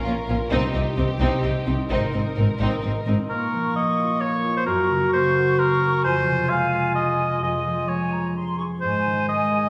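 In a straight 3/4 pulse at 130 BPM, this adventurous, heroic cinematic cue opens with a build-up in which lush, bowed violin and viola sections, a rich cello section and an up-front double bass section carry the melody, a second line and a low foundation over ringing harp arpeggios, before the strings stop around 3.2 seconds and a clear, up-front oboe, a pure flute section and a mellow clarinet take over the lines from 3.3 seconds as the harp continues to the end, all set in a wet scoring-stage reverb over chords moving from Bbm through Gb, Fm and Db/F to Ab.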